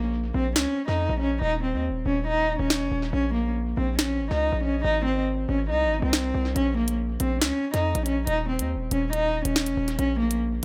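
This drill track, cut from a longer piece, moves at 140 BPM in 4/4 with a half-time feel in Bb minor, and its mood is tense and menacing. A single bowed cello carries the melody between Bb3 and Eb4, played close and up front with a dark, woody tone, vibrato and a sul tasto softness, and a tape echo trails its phrases. Beneath it, a hard-hitting 808-style bass sits between Eb1 and F2, its sine body layered with noise for a punchy, heavy hit with a fast attack and decaying tail. The electronic drill kit enters at 0.6 seconds, with a sharp snare and bright hi-hats pushed forward and given their own tape echo. The harmony circles Bbm, Dbsus2/Eb and Ab, and a break runs until 6.6 seconds. Light reverb and an echo-heavy mix give the whole a shadowy, spacious sound.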